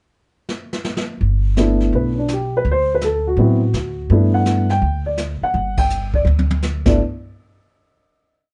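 A brushed drum fill with dark cymbals, snare sweeps and a boomy kick opens this short, relaxed, swinging jazz piano trio piece at 0.5 seconds, the pizzicato upright bass joins at 1.2 seconds in a woody two-feel, and the mellow, up-front upright piano enters at 1.6 seconds with a recurring bebop-style theme, syncopated comping and rootless voicings under light reverb, before a band accent and a closing final hit.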